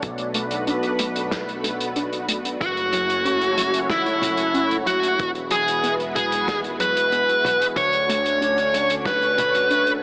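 Heard through a narrow AM-radio filter with a moderate plate reverb, this moody, cinematic synthwave excerpt in F# minor moves at 93 BPM over Bm7, F#m7, Eadd9 and Dmaj7 chords. A silky, string-like analog pad with ensemble chorus and sidechain pumping holds sustained chords, while a dark, warbling pluck with chorus and digital delay plays arpeggios in the background. A fat, detuned sawtooth bass pumps beneath a muffled, dry kick and a lo-fi soul kit of hi-hat, snare and toms with gated reverb, and from 2.6 seconds an up-front fuzz lead guitar carries the melody through tape echo.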